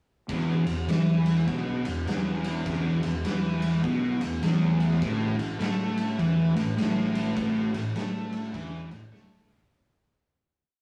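A rough, saturated rehearsal-room recording with moderate reverb carries a brooding, hypnotic stoner and doom metal piece at 102 BPM in swung 4/4, where an oversized low-tuned drum kit sits up front with a punchy kick, medium-tuned snare, toms and dark ride cymbal; two thick fuzz guitars play a picked single-note riff over E5 then A5 in the background; a growly, overdriven fingered bass doubles that riff; and a very quiet, detuned organ-like drone of sustained chords enters at 1.5 s before the piece fades out from 7.4 s under a drum fill at 9.1 s.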